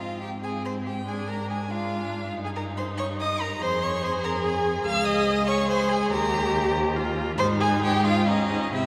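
Bathed in a wet cathedral reverb with a faint mains hum beneath it, this stormy, dramatic fragment of a quick classical-period string quartet movement moves in a rubato 6/8 at 94 BPM, tuned to A4 = 436 Hz. Two rich, vibrato-laden violins play throughout: the first carries a focused, smooth-topped melody up high, and the second plays an even line beneath it, while a warm viola fills in the accompaniment with soft attacks and expressive portamento. A dark, close cello sits up front on the bass with its own sliding vibrato, as the harmony moves from Ab through Bb7/Ab, Fm and Db5 before settling on Ab5.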